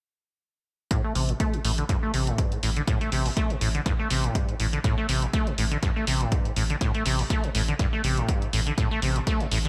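A squelchy, resonant sawtooth acid riff with lush chorus, delay and sidechain pumping opens this driving, hypnotic acid house fragment at 0.9 s alongside a dry, punchy electronic kick and an equally dry analog hi-hat in a studio ambience, swung on the sixteenths, before a round, deep sine-and-triangle bass joins at 1.2 s, pumping beneath the saturated, up-front riff in a bright 1980s-style digital mix with light reverb.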